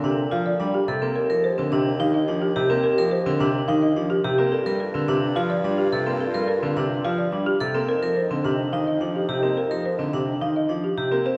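A classical piece of minimalist pattern music in 3/4 at 107 BPM, with a straight, hypnotic feel and a bright character rooted in F mixolydian. A woody, rustic folk marimba played with medium mallets carries the melody from G4 to F5, while a metallic, ringing vibraphone with hard mallets and a fast motor vibrato spins arpeggios up front between C4 and Bb4. Beneath them, a clear concert grand piano with deep bass plays accompaniment in the low register, and a bassoon with light vibrato holds the bass line in the background. A distant, very quiet French horn adds a soft second line between Eb4 and A4. All five parts play together throughout this 11-second excerpt, cut from a longer piece, with the harmony moving from Bbmaj9 through Eb69 and Gm11 to F9sus4, and the ensemble sits in a wet concert hall reverb with a 1.7-second decay.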